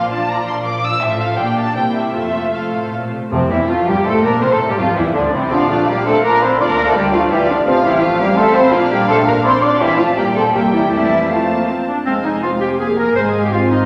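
A clear solo clarinet sits up front at 12.1 s, closing this cheerful, spirited passage cut from a quick classical-period movement for symphony orchestra in triple time, played with rubato. Before it, muted violins carry the melody over a veiled, con sordino string body. A second violin line rests in the background, violas fill in the accompaniment with soft attack, and distant cellos and double basses hold the bass. At 3.3 s the winds join: a dark, roomy cor anglais and a pure, close-miked flute group add second lines, mellow French horns sustain chords, and soft-mallet timpani add one brief, round touch. The harmony shifts to minor chords for the final bars, while a wet scoring-stage reverb lends the whole orchestra a spacious glow.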